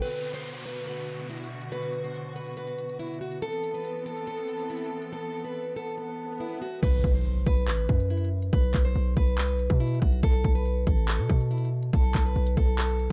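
A distorted 808-style bass arrives at 6.8 seconds, heavy and aggressive, its sine tone carrying a noise layer with a fast attack and decaying tail, sitting up front in this menacing, dark trap excerpt at 141 BPM with a half-time feel in B phrygian. Before it, a dark symphonic string section holds lush, woody sustained chords from a distant place in the mix, bowed with vibrato, over Bm and Am until 6.8 seconds. A picked, plugged-in old ladder-braced acoustic guitar plays a boxy melody through digital delay from start to finish, while the electronic trap kit drives the whole piece with a hard-clipped kick, crisp hi-hats, handclaps and crash cymbal, tape-flavoured and close. Electronic sound effects, a downlifter, a swell from 5.5 seconds and an impact as the second section lands, mark the shift to B5 and Asus2 chords. The production is dark with little reverb, keeping the drums and bass up front.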